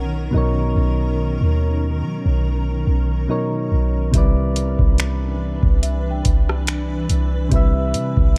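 This romantic, smooth contemporary R&B fragment opens with soft, round electric-piano-like synth keys, gentle, warbling and vintage, treated with chorus, over a clean, deep 808-style bass and a cloudy granular pad that blurs and evolves inside its own reverb. A worn celesta sits in the background, bell-like and slightly out of tune, its sweet tones trailing through an analog delay. The harmony rests on Bmaj9 before shifting to Cmaj9 at 4.1 s, the same moment a booming analog drum machine arrives up front with a deep kick, metallic hats, finger snaps and rim clicks in a lightly swung feel. The drums carry a tape-warm edge, while the bass stays dark and boomy beneath the mellow keys. The overall production is dark and warm, with a digital ambience, in this short passage cut from a longer piece.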